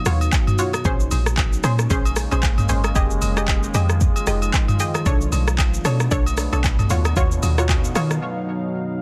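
Over a swung sixteenth-note groove, this soulful, hypnotic amapiano excerpt sets an electronic afro-pop drum kit with a deep kick, handclaps, rim clicks, shaker, toms and hats up front beside round, dark log drum bass, close acoustic agogo bells and woodblock, bright wave-folded chord stabs carrying chorus and digital delay, and a moody, evolving detuned sawtooth pad with chorus, reverb and sidechain pumping that moves through minor ninth chords and holds alone through the break from 8.2 seconds in a dense, heavily limited modern master.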